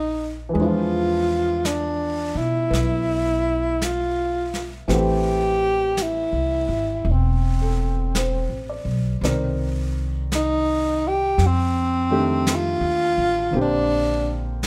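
Swung eighths drift through this late-night, intimate jazz ballad fragment, where a dark, breathy tenor saxophone carries the melody up front with subtone, vibrato and scooped notes over natural baby grand piano accompaniment and a woody pizzicato upright bass, while an airy brushed drum kit on snare and hi-hat joins at 0.6 s, the room touched by light reverb as the harmony moves from Ebmaj9 to Bb69.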